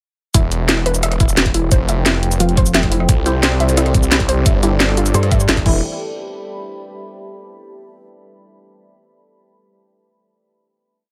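A snarling, distorted sawtooth bass drives this dark, technical drum and bass piece in E phrygian at 175 BPM, growling through chopped, compressed phrases up front from 0.3 seconds. A metallic FM wobble bass cuts in at 2.4 seconds with saturated, modulated phrases whose wobble speed changes, while a knocking electronic kick and a tight kit of cracking snare, bright hats, rim clicks, shaker and crash keep a mechanical, futuristic drive. Behind them, a warbly, dusty pluck repeats a lo-fi five-step arpeggio loop that drifts against the bar, with chorus and delay, and a muted filtered dub stab drops sparse, echoing power chords through a phaser. Two dark pads fill the background: a wave-folded analog pad holds sustained chords with lush chorus, and a deep ambient pad with ring modulation and built-in reverb slowly shifts through Em, Fadd9, Cadd9 and Gsus2. The drop ends at 5.8 seconds, leaving that ambient pad to carry a final chord in a digital ambience.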